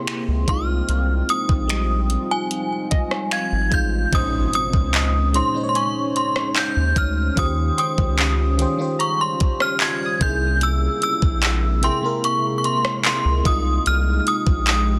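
A dense, heavily limited modern mix with digital ambience frames this late-night, moody contemporary R&B excerpt at 74 BPM in Bb dorian, moving through Fm9, Bbm11, Eb13 and C7b13. Up front, an inharmonic, ringing FM synth chime carries the melody with ensemble chorus, tremolo and delay, over a knocking electronic drum kit of kick, rim click, snaps, handclaps and warm hats with a softly clipped snare, and a round analog bass that enters at 0.3 seconds. A lush, dreamy FM electric piano with a soft pad layer, a deep, detuned sawtooth ambient pad with built-in reverb, and a gentle background pluck with delay fill out the harmony, while a distant electronic impact marks the shift at 4.1 seconds.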